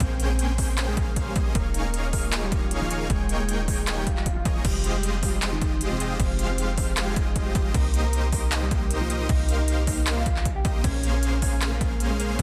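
Future bass in F minor at 155 BPM with a half-time, lightly swung feel, this emotional, dreamy excerpt sets a dark, clean electric guitar melody with tape echo and sidechain pumping over a huge, detuned supersaw riff and a deep, boomy 808-style bass that also pump to the beat. Punchy overdriven electronic kicks and a big-room dance kit with crisp hats, handclaps and crash cymbal drive the track, while a very quiet, breathy pad holds sustained chords moving through Bbm9, Eb9sus4, Fm9 and Cm7. A brief electronic swell appears in the background at 4.1 seconds, all within a dense, heavily limited modern master and digital ambience.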